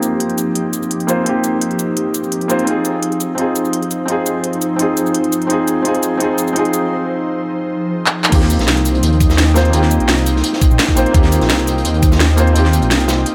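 A felt-muted upright piano sits up front in this uplifting, lush liquid drum and bass passage at 170 BPM in Eb major, its soft, intimate tone softened further by a low-pass filter and a digital delay as it plays accompaniment over Eb69 and Fm7 chords. An ethereal pad holds sustained chords beneath it with slow-attack, chorused shimmer and sidechain pumping, undergoing a filter sweep during the build-up, while a vibraphone with soft mallets rings out metallic arpeggios in the background through dub echo. The drum and bass kit drives the opening with a cracking snare, crisp hats, shaker, handclaps and crash cymbal, then a brief break gives way to a drum fill at 8.1 seconds. At 8.3 seconds the drop lands: a deep, rumbling detuned saw bass arrives saturated and up front, joined by a knocking electronic kick and a gritty, saturated breakbeat kit with a rolled-off top. A moderate hall reverb lends the whole passage a lush sense of space.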